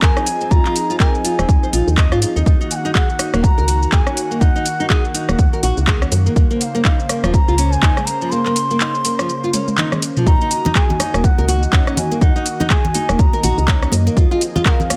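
Set in a digital ambience, this earthy afro house groove in Eb dorian moves at 123 BPM with a swung sixteenth feel, led by an airy, reedy bansuri melody with dub echo over a chorused, detuned analog pad and fingerpicked nylon-string guitar arpeggios that both pump with the sidechain, while a woody, round FM bass rides beneath an overdriven, deep electronic kick sitting up front and an afro-pop kit of handclaps, metallic hats, rim click, shaker and toms in a small room, with a break at 8.3 seconds, a drum fill at 9.5 seconds and close, dry congas joining at 10.7 seconds.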